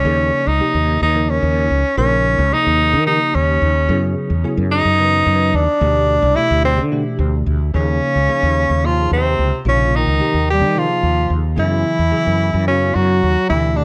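Jazz in a straight 7/8 at 219 BPM, slick and soaring, where a clear, punchy tenor saxophone solos up front with light vibrato and scooped notes over a bell-like tine electric piano with ensemble chorus in the background and a round, dark fretless electric bass with subtle chorus, while a close-miked bass clarinet with vibrato joins softly in the background at 7.8 seconds, all in a small room with light reverb as the harmony moves through Eb9sus4, Gb9sus4 and Dsus4 in this piece cut from a longer work.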